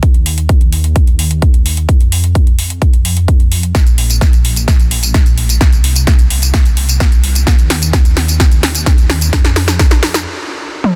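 A dense, heavily limited modern mix with little reverb carries this anthemic, powerful excerpt of festival progressive house at 129 BPM, built as a single build-up from the start. An up-front, layered electronic kick drives beneath a big-room kit of punchy snare, metallic hi-hats, tambourine and toms, which breaks into a drum fill from 3.7 seconds, while a thick, menacing detuned saw bass growls with saturated, sidechain-pumping sustain. The bass drops out at 10.3 seconds, opening a brief stop before the cut.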